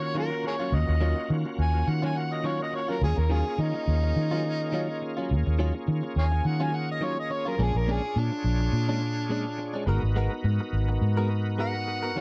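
Dry and close in a 1970s studio manner, this smoky, mournful blues excerpt in Eb minor moves at 105 BPM with a 16th-note swing, its chords running from Ebm9 to Bb7#9 at 7.6 seconds and Abm9 at 9.9 seconds. Up front, a gritty, overdriven harmonica plays a jazz-style solo with light vibrato, tongue slaps and scooped notes, while a round, punchy, foam-muted fingered electric bass also sits up front beneath it. A shouting tonewheel organ with key click, slow rotary speaker and chorus vibrato fills in the accompaniment, and a twangy, compressed clean guitar recorded direct adds picked stabs from 0.1 seconds.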